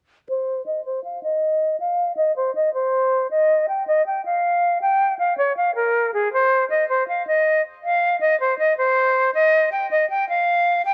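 A worn, warbling cassette sheen colors this short cut from a longer piece, its old tape drifting gently in pitch beneath light reverb and studio ambience. It sits in a hip hop frame with a half-time feel, and the mood is wistful and dreamy. A jazz flute carries the melody from 0.3 to 10.9 seconds, placed up front with an airy, metallic tone, soft attacks and vibrato. A low-pass filter rolls off its highs, and a filter sweep moves across the flute for the whole of its phrase. The line stays within a modest range, from Ab4 up to G5, giving the fragment a hazy, half-remembered quality.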